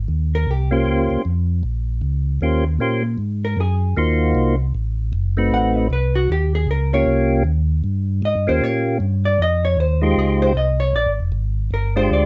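A swinging 4/4 jazz groove at 155 BPM in Eb mixolydian carries this soulful excerpt. A round tonewheel organ plays the bass line with chorus vibrato and a slow rotary speaker. From 0.7 seconds, a second, percussive organ voice with third-harmonic percussion states the mellow melody up front. A dark, clean, picked hollow-body electric guitar adds its part briefly at 0.3 seconds and again from 3.4 seconds onward. All of this moves over chords such as Eb13, Ab13, Adim7 and Bb13, in a light reverb with a soft, rolled-off top.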